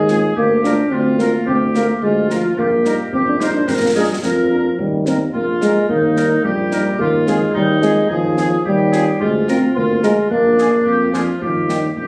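A mellow, up-front euphonium carries a smooth-topped second line through this spirited, rousing military-style march for wind band in Eb major, moving at 109 BPM in a straight 2/4 and cut from a longer piece. A warm, vintage trumpet section with light vibrato takes the melody from 0.1 seconds, over a distant, roomy woodwind section, a mellow French horn section set in the background, and a solo tuba anchoring the bass. Close, dry concert snare and bass drum with dark cymbals drive the ensemble, and the whole is heard with light reverb and compression, as if captured on a phone in the room.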